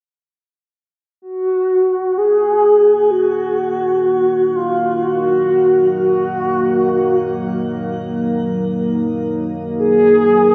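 A mellow, horn-like synth lead with a round tone, soft attack and gentle vibrato opens this dark, cavernous ambient excerpt at 1.2 seconds, carrying a narrow melody up front through chorus, phaser, shimmer reverb and tape echo, before a deep, moody pad of detuned sawtooth and sine layers with a sub octave, wave-folding and ring modulation fades in at 2.8 seconds to hold sustained chords beneath it, the whole echo-heavy mix bathed in a wet spring reverb.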